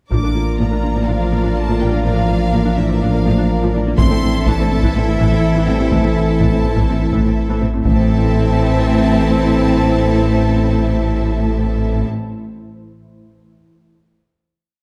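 This is a cinematic film score blending orchestra and electronics, tense and futuristic, moving at 124 BPM in A phrygian with a straight 4/4 pulse. A bright, focused violin section carries the melody over a rich, smooth second violin line, while lush violas drive a rhythmic ostinato and a very quiet cello section pushes a bass ostinato, doubled in the background by intense double basses. Dark French horns double the tune at the octave and distant, roomy trombones add slow swelling chords, joined from 0.9 seconds by a very quiet, ethereal pad with a slow attack and long release. A glassy, crystalline wavetable pluck pulses with a filter sweep and chorus until 7.8 seconds, and a thick, saturated sub bass holds an up-front low drone on A, while a very quiet taiko ensemble struck with hard sticks pounds a big drum ostinato that returns at 4.0 seconds. The harmony shifts from Bb over A to A minor, and after the theme the piece settles onto a final chord at 7.9 seconds, all within a dark production and moderate scoring stage reverb.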